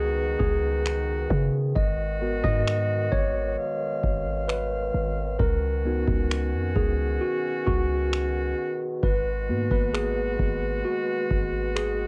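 Contemporary R&B with a longing, sensual mood, this excerpt from a longer piece is led by a clean, tine electric piano sounding through its built-in speakers, over classical-style woodwind section chords with light vibrato, a warm, deep 808-style sine bass with a noise layer and fast, decaying attack, and a booming analog drum machine of deep kick and finger snaps entering at 0.4 s with 12-bit sampler grit, as the harmony moves between C#9sus4 and G#m7 in a lightly reverberant home recording where the piano, woodwinds and drums carry a cassette tape coloring.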